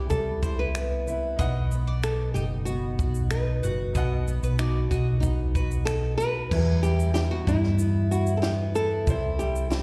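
A straight 4/4 groove carries this wistful, reflective acoustic pop excerpt, heard as a live gig through a venue's PA with light recital hall reverb. A small, boxy nylon-string guitar carries the melody with slapback echo over a double-tracked, fingerpicked dreadnought steel-string guitar, a clear, woody upright piano in the background, and a round, punchy hollow-body electric bass up front, while a dry, compact cocktail kit adds kick, high-tuned snare, finger snaps, shaker and dark crash cymbal. A bowl-back mandolin picks double-string arpeggios with slapback and tape echo from 0.4 to 5.7 seconds, and the harmony moves from Cmaj7 and B to Em at 6.5 seconds as a new section begins.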